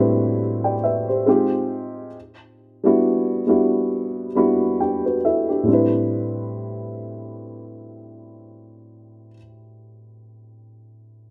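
A woody, boxy upright piano sits up front with short sustain as it comps sultry, late-night R&B chords from Am11 through Fm9 and Em9 at a slow 68 BPM with swung sixteenths in A dorian, adding a fill from 3.9 to 5.7 seconds before returning to Am11, all set in moderate studio reverb within a dark, warm production on this cut from a longer piece.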